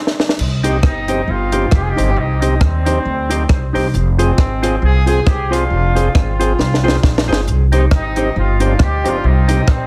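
A woody, thumpy upright bass and a dry, compact cocktail kit with a high-tuned snare and dark cymbals sit up front in this energetic, driving ska excerpt, which opens with a drum fill and band accent before the bass enters at 0.4 seconds. A fat, percussive tonewheel organ with key click plays stabs, a dark, clean electric guitar adds tape-echoed accompaniment in the background, and a distant, roomy horn section carries the melody with light vibrato and tape echo. The swung groove moves from C minor to F minor and back, with another drum fill at 6.6 seconds, all framed by a moderate reverb and a heavily compressed, radio-like sound.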